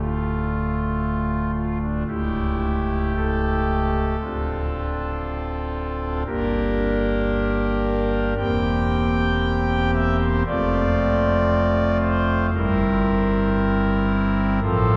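Rubato and unhurried at around 58 BPM in 4/4, this serene, reverent chorale-style classical passage is carried by a solo pipe organ on foundation stops, its thick, romantic voicing reaching from C#1 up to G5. The organ sits up front, framed by a long church reverb that hangs for nearly four seconds. Its harmony moves from D minor through A7/C#, Gm and F toward an unresolved C7/G as the fragment, cut from a longer piece, ends at 15 seconds.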